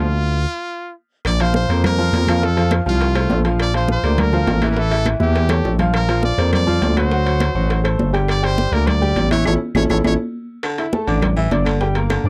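Heard through a cassette-tape haze with light reverb, this fiery, danceable salsa excerpt is cut from a longer piece. A brilliant, punchy trumpet carries the melody with vibrato, over a polished baby grand piano with audible action noise and a growling, thick FM bass sitting up front. After a brief stop in the opening, the percussion arrives at about 1.3 seconds: dry, hard-handed congas, woody claves and ringing vintage timbales sit in the background, while tight, saturated bongos stay very quiet. Drum fills and a band accent drive toward the final stretch. There the trumpet has fallen silent, and a breathy, raspy baritone saxophone takes up a short second line from 10.6 seconds until the end.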